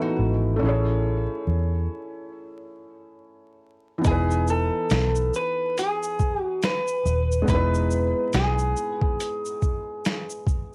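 Lo-fi hip hop with a mellow, nostalgic swing, this fragment opens on a brief fingerpicked flamenco guitar figure that ends at 0.6 seconds, while a soft felt-muted upright piano, its action noise audible, and a dark, round, punchy foam-muted electric bass carry the B7sus4 and Amaj7 harmony. At 4.0 seconds the music settles onto Emaj7 as a gritty, pitched-down sampler-style boom bap kit arrives with a thumpy kick, medium-tuned snare, hi-hat and shaker, and at 4.1 seconds a slightly broken-up, compressed electric guitar takes the melody through a small old amp. Cassette tape coloring, vinyl crackle and light reverb give the whole piece an intimate home-recorded feel.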